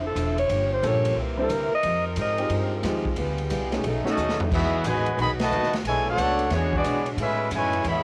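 Joyful and energetic, this big band swing excerpt moves at 180 BPM in 4/4 with a swing feel. It opens with a breathy, vibrato-laden alto saxophone solo over woody pizzicato upright bass, bright sustained saxophone-section chords, picked steel-string acoustic guitar and a grand piano, while an airy drum kit with dark cymbals and a punchy kick plays a fill at 4.2 s. At 4.1 s a smooth trumpet section takes the melody over a clear, softly attacked trombone line, and at 4.5 s the music settles into E major, with a band accent at 5.3 s, all captured as a home cassette recording with light reverb.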